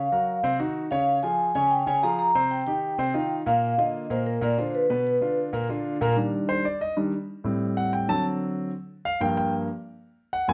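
A soft-mallet vibraphone opens this brisk, sophisticated jazz piece with a mellow, airy melody, ringing with medium motor vibrato and plate reverb over a concert grand piano with deep bass and a natural, up-front presence. The vibraphone drops out at 5.4 seconds. From 6.2 seconds the piano takes a danceable solo through Ebmaj7, Am7, D7 and Gm7 until 10.5 seconds, heard in a moderate studio room.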